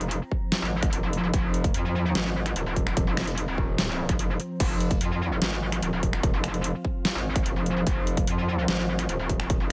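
A dry, close-sounding slice of heavy, chaotic half-time wobble dubstep, where a metallic, bright, saturated wobble bass with chorus and overdrive sits up front beside an overdriven drum kit of crash cymbal, finger snaps, hi-hat and deep snare, a punchy overdriven electronic kick joins at 0.3 s, and a detuned, vintage wavetable pad warbles and morphs underneath in sustained chords through phaser, its own reverb and sidechain pumping.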